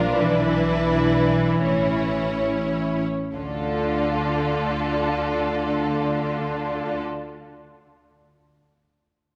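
A full string orchestra sounds together from the very first moment in this elegiac, yearning slow movement in D minor, a brief passage cut from a longer classical work. Moving in 6/8 at roughly 33 to 46 beats per minute, the music breathes with rubato and slows through its opening 3.3 seconds as the harmony passes from E5/B to A. A rich, closely heard violin section carries the vibrato-laden melody, while a second violin line, more focused and set farther back, carries a lower voice beneath it. Violas fill the middle with smooth, even bowed accompaniment, and the bass is anchored by a warm cello section with light vibrato alongside a double bass section with a softened top. At 3.3 seconds the harmony settles onto D minor as a new section begins, and a lush concert-hall reverb with a long 2.4-second decay surrounds the ensemble in a sense of grieving tenderness.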